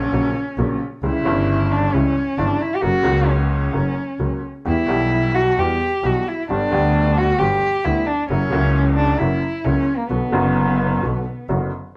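Dramatic and passionate, this short tango excerpt, cut from a longer piece, moves at 132 BPM in 4/4 with a rubato feel in B harmonic minor. A bowed cello carries a solo line throughout, its dark, nasal and boxy tone shaped by vibrato and portamento, sitting up front until 11.5 seconds. Beneath it, a clear upright piano with a woody, slightly detuned character provides accompaniment, spanning from deep bass notes into the cello's register. A bowed double bass anchors the low end with a focused sound and vibrato, also placed up front. The harmony travels from F#/A# through C#dim, F#, Em, G and F#7 before resolving to Bm at 10.1 seconds, all set in a moderate studio reverb.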